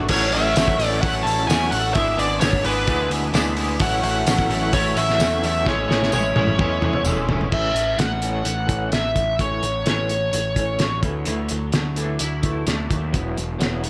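A straight 4/4 indie rock pulse drives this wistful, jangly passage: a muffled, cloth-damped drum kit with a fat snare sits up front beside a punchy fuzz bass, while a slightly broken-up guitar through a small old amp plays a riff with tremolo throughout. A clean, twangy guitar adds a second riff with chorus and analog delay, drops out at 7.5 s and returns at 11.2 s. A jingly tambourine plays through the first half. A smooth overdriven lead guitar carries the melody in plate reverb and delay until 11.0 s, and a drum fill leads into the second section.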